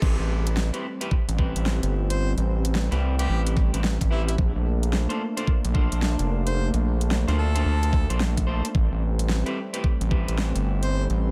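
Funky and gritty, this glitch hop drop is cut from a longer piece, built on a saturated, up-front synth bass of square and sawtooth tones with oscillator sync, and an overdriven, knocking electronic kick, while a dubstep drum kit adds a huge overdriven snare, hi-hat and crash cymbal. A mellow, detuned analog pad sits in the background with chorus and sidechain pumping, and a clean, picked electric guitar plays stabs coloured by vintage 12-bit sampler grit, pumping and analog delay. From 2.1 seconds a clear harmonica carries a classical-style solo melody through analog delay in a dry, echo-heavy mix, over chords moving from Am9 to Bbmaj7 and back.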